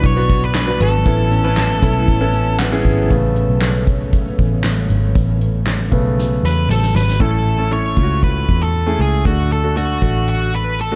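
A dark, warm production with light reverb frames this anthemic, piano-driven pop excerpt in A major at 117 BPM, where a brilliant concert grand piano carries the accompaniment throughout and takes a solo from 3.1 seconds. A round, foam-muted electric bass sits up front beneath a soft-mallet drum kit with a fat snare, boomy kick, hi-hat and handclaps, while a thick, warbling sawtooth pad murmurs very quietly until 7.2 seconds. A fuzzy, distorted octave lead guitar sings the melody at the opening and returns at 6.5 seconds, with a full-bodied jumbo acoustic guitar riff, finger squeak audible, and a jingly, saturated tambourine tucked in the background early on.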